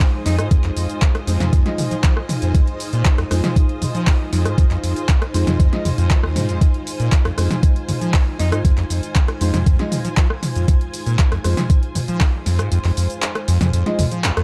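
This trippy, hypnotic acid house excerpt sits on a dark production with light reverb, driven by a thumpy, overdriven electronic kick that sits up front with the air of a large room until it drops out at 12.3 seconds. A punchy analog drum machine adds a dry snare, handclaps, hi-hat, rim click, shaker and toms, while a very quiet, gritty breakbeat kit contributes hi-hat, snare and tambourine from a small room. The squelchy, resonant saw acid bass carries the riff with filter sweeps, tube saturation and lush chorus, pumping against the kick. Behind it, a vintage string machine holds full-bodied sustained chords on Fm7 with ensemble chorus, layered with a smooth bowed string section that adds vibrato texture. A boxy concert grand piano stabs with long sustain and tape echo from 1.3 seconds, and an alto saxophone with vibrato drops in for two brief, echoing Eb4 notes before a band accent at 14.2 seconds.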